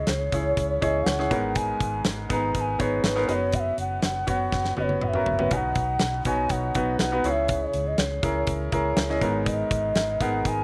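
A close-miked bass bansuri carries the melody with an airy, bamboo tone, tongued and unsteady with vibrato, and a slapback echo that it shares with the bright, woody upright piano, whose long-sustained accompaniment sits up front. This is a bittersweet, driving slice of piano-driven pop in G# minor at 122 BPM, moving through C#m, G#madd9, F#sus4 and B, over a dark, round, foam-muted electric bass and a huge arena drum kit with a punchy kick and medium-tuned snare. The drums enter at 0.1 seconds and play a fill from 4.5 to 5.5 seconds, all captured outdoors with little reverb.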